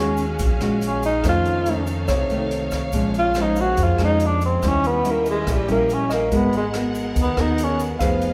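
A breathy tenor saxophone opens this wistful, intimate bossa nova in Eb minor, carrying a mellow, whispered solo melody with vibrato, soft attacks and scooped notes, placed up front until about 7.8 seconds. Beneath it, a fingerpicked nylon-string guitar and a woody, thumpy pizzicato upright bass hold down the 142 BPM straight 4/4 groove, while a clear, lush bowed string section sustains chords through the whole passage. A barky tine electric piano, lightly overdriven through a combo amp, sits in the background, dropping out after 3.1 seconds and returning at 6.1 seconds. The airy, polished jazz drum kit enters at 0.2 seconds with hi-hat, rim click and a boomy kick, joined by a grainy, very quiet tube shaker. Chords move from Ebm11 through F7b13, Bbm7 and Eb7b9 to Abm9, and a moderate recital-hall reverb gives this excerpt from a longer piece a gentle sense of space.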